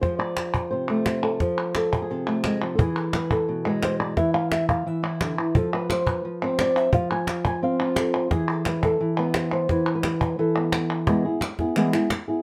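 Intense and dramatic, this short flamenco excerpt drives along at 174 BPM in a straight 4/4, cut from a longer piece. A thumb-plucked flamenco guitar carries the melody up front, its dark, boxy tone ranging from B2 to G#5 with audible finger squeak and a touch of plate reverb. Beneath it, a close, dry cajon struck with hard hands gives a woody thump with faint snares, while crisp, compressed palmas hand claps join at 0.2 seconds with a saturated edge. The harmony moves from F to E and through a rootless Dmadd9 and a bare F5 before a brief break with the chord dropping away, then settles on Esus4 and resolves to E as a new section begins at 11.1 seconds. The production is dark and warm, set in a moderate studio room.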